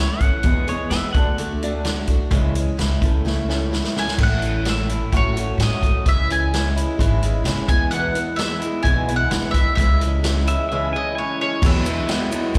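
Warm and jangly, this folk and heartland rock excerpt moves at 129 BPM in E major, with a boxy, old-stringed acoustic guitar, a slightly broken-up, phased electric guitar riff and short, clean pedal steel phrases with volume swells, all touched with slapback echo, over a woody pizzicato upright bass and an up-front vintage kit with dark cymbals and a punchy kick that plays a fill ahead of a later break; a picked double-string mandolin carries the melody from 4.0 seconds, and a very quiet reedy accordion and a grainy tube shaker join at 11.6 seconds, all heard as a live gig through the venue's PA in a recital-hall reverb.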